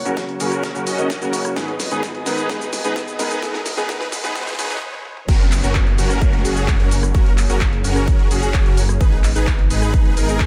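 Festival progressive house at 129 BPM in F# major, euphoric and triumphant, with a dark, worn grand piano with audible action noise playing accompaniment until 4.7 seconds over a nasal unison pad, a thick, beating detuned saw bass and huge, bright supersaw chords, all pumping to the punchy electronic kick and a big-room drum kit with a huge snare, as a filtered build-up with drum fills and a very quiet riser and downlifter stops briefly before the drop at 5.3 seconds.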